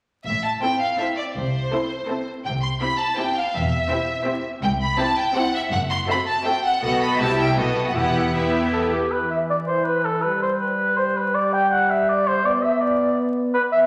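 Dramatic and urgent, this quick classical-period orchestral movement in 3/4 at 164 BPM pushes forward with a rubato feel, moving from A minor toward E minor. A focused chamber violin section carries the melody over a lush symphonic second violin line, an intense viola accompaniment and smooth, even bowed cellos and double basses, all with vibrato. At 8.7 seconds the strings give way to a pure, hollow silver flute and a roomy oboe on a second line, joined at 9.1 seconds by soft-attack French horns holding sustained chords, all set in a reverberant scoring-stage space with vinyl crackle.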